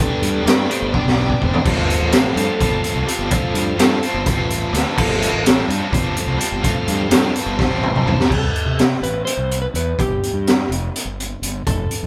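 Psychedelic rock in a brisk 7/8 at 252 BPM, hazy and kaleidoscopic, captured as a band playing live in one room with light reverb and cut from a longer piece. A piping, lightly overdriven tonewheel organ with key click and slow rotary speaker takes a solo over sustained chords moving from Gadd9 to F/G, beside a biting, double-tracked guitar riff with tremolo, a punchy fuzz bass, and an up-front garage kit with a high-tuned snare, boomy kick and gritty, saturated tone that throws fills at 0.9 and 7.6 seconds. At 8.3 seconds the organ and riff guitar stop, and a dark, slightly broken-up slide guitar carries the melody over bass and drums to the end.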